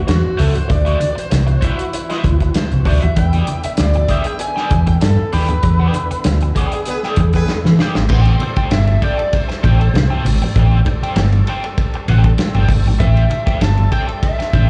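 Funk at 98 BPM in A dorian, this short section cut from a longer piece has a sly, hypnotic mood and sounds like a live gig heard through a small club's PA, with roomy reverb and a dulled top end. A dark, overdriven lead guitar through a small cranked amp carries the melody with slapback and tape echo, while a crunchy, picked guitar adds wah-coloured accompaniment beside it. Down in the background, a thick, gritty tonewheel organ holds sustained chords with key click, chorus vibrato and a slow rotary speaker, moving from D9 to E7#9 before settling on Am7 at 8.1 seconds. Up front, a round, punchy hollow-body short-scale bass and a soul drum kit with a tight kick, medium-tuned snare and dark cymbals anchor the groove, with very quiet, low-tuned congas played by soft hands underneath. A distant horn section slips in briefly from 6.9 seconds, inside a band accent that closes with a drum fill just before the shift at 8.1 seconds.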